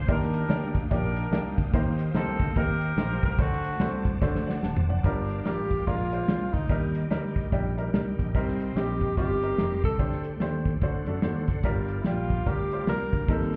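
Uptempo gospel with a solemn, soulful swing, this cut opens with a distant saxophone section on the melody until 4.2 s, and after a drum fill a breathy, up-front tenor saxophone takes the lead from 5.1 s, over a round fingered electric bass, a worn grand piano with short sustain, a dark, dry soul drum kit and a reedy tonewheel organ with slow rotary speaker and chorus vibrato in the background, the sound of a small club room muffled as if heard through a wall.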